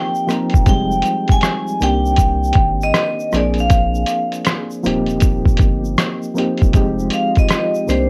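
This nostalgic, hazy lo-fi hip hop excerpt opens with a ringing, metallic vibraphone melody struck with hard mallets, carried by a slow motor vibrato, over mellow electric-piano-like synth keys treated with chorus and tremolo. A grainy egg shaker sits close and dry in the background from 0.1 seconds. A muffled, pitched-down sampler-style drum kit follows at 0.3 seconds, with a thumpy kick, hi-hat and rim click that sound compressed and re-recorded in a small room. A deep, round dub sub bass joins at 0.5 seconds. At 79 BPM in 4/4 with a swung sixteenth-note feel, the harmony moves through Eb69, Fm7, Cm7 and Bb7, and a hollow, flute-like pad with chorus slips in at 6.7 seconds. The vibraphone, keys, drums and pad carry a cassette-tape haze, and the whole sits in light reverb with the intimate character of a home recording.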